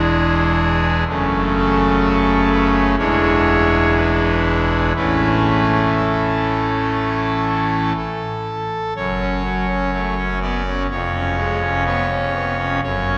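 A solo pipe organ on its trumpet stop opens on an E7 chord, its brassy, bright romantic voicing sitting up front while a cathedral reverb of about 4.1 seconds casts it far back in a softened, distant room. This majestic, reverent chorale in A major moves at a stately 62 BPM in 4/4, passing through F#m and back to E7 before settling on A at 5.0 seconds, with the organ spanning E1 to D5. At 9.0 seconds a new passage turns to F#5 and then C#7/E#, and the excerpt breaks off at 13.2 seconds, cut from a longer piece.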